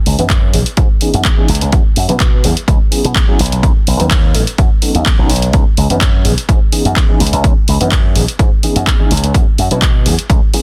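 A punchy, up-front electronic kick anchors this groovy, sensual filtered disco house excerpt at 126 BPM in C# minor, with a bright slap bass through an envelope filter pumping against it and a tape-warm house kit adding handclaps and warm hi-hats. A reedy, worn electric piano, slightly out of tune and heard through its built-in speakers, shimmers with fast tremolo and phaser while moving through C#m7, F#9sus4 and B7. A filter sweep runs across the whole 10.6 seconds, and the dry, dense, heavily limited mix keeps everything close and forceful.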